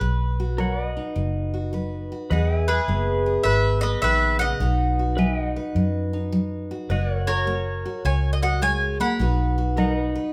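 A bright, woody mandolin carries the melody up front in this down-home, heartfelt country excerpt at 105 BPM with a swung feel in B major, over a full-bodied picked dreadnought acoustic guitar with audible finger squeak, a dark, round, foam-muted vintage electric bass, and a clean pedal steel guitar that enters at 0.6 seconds with compressed sustained chords and volume swells, all set in a moderate large studio reverb.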